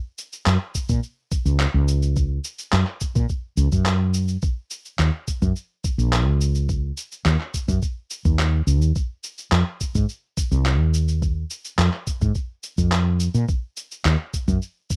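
A woody fretless electric bass anchors this sunset chillout piece, its dark, growly, hollow-body tone sitting up front, round and punchy through an amp, and ranging from Bb1 to Bb2 from 0.5 s. The mood is wistful and smooth, set at 106 BPM in a straight 4/4 in Eb dorian, with tuning at A4 = 443 Hz. An electronic shaker and handclaps come in first at 0.2 s, quieter in the balance, with a sampler-style, compressed and gritty sound at natural pitch, re-recorded in a small room. An electronic kick drum joins at 0.8 s, knocking and tape-warm, placed close to the listener. The sound is a rough home demo with little reverb, cut from a longer piece.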